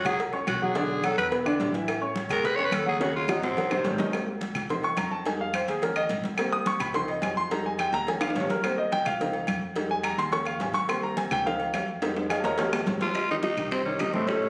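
A roomy phone recording with moderate studio reverb catches a lively, sophisticated Afro-Cuban jazz excerpt at 213 BPM, where a raspy, growling tenor saxophone solos up front until 3.8 s before an up-front grand piano with short sustain takes the solo from 4.1 s over looping Abmaj7, Dbmaj7, Fm7 and Eb7sus4 changes, backed by woody pizzicato upright bass, ringing agogo bells and timbales, dry claves, tight high-tuned cowbell and bongos, bright congas in the background and drum fills, with the saxophone returning at 13.0 s.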